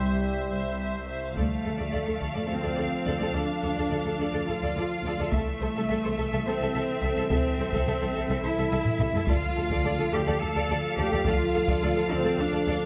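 Hard-stick taiko drums enter at 1.4 s and drive this dark, dramatic excerpt of epic orchestral film score in 7/8, with a fill at 8.9 s, beneath a bright, focused violin melody, a smooth second violin line in the background, rich violas with expressive portamento, mellow, distant French horn chords, clear cellos and lush double basses, all set in a moderate scoring-stage reverb.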